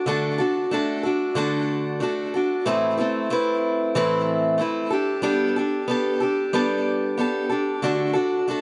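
A picked steel-string acoustic guitar carries this short rock excerpt alone, sitting up front with a brilliant, boxy parlour tone and a touch of digital delay. The mood is jangly and open-road, set to a straight feel in 4/4. Moving between A2 and B4, the guitar opens on D, shifts to Amadd9 at 2.7 seconds and to Gadd9 at 4.9 seconds, then settles back on D near the end. Light reverb gives the playing a little air, while the overall production leans dark. The fragment runs for just 8.6 seconds, as if lifted from a longer piece.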